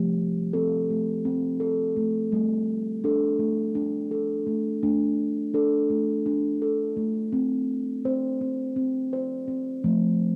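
In a straight 7/8 pulse counted at 168 BPM in eighths, this gentle, meditative world piece unfolds in D minor pentatonic, tuned slightly low at A4 = 439 Hz. A steel tongue drum plays solo throughout, struck with soft rubber mallets and ranging from F3 to C5. Its tone is round, pure and ringing, with a dark, smooth mellowness, and it sits up front in the mix. The harmony moves from F to G5, then settles on D5 at 4.8 seconds as a second section begins, passes through an unharmonised stretch, and returns to F at 9.8 seconds. A moist studio reverb with a short half-second tail surrounds the drum, and the home cassette recording adds an intimate, homespun quality to this brief passage cut from a longer piece.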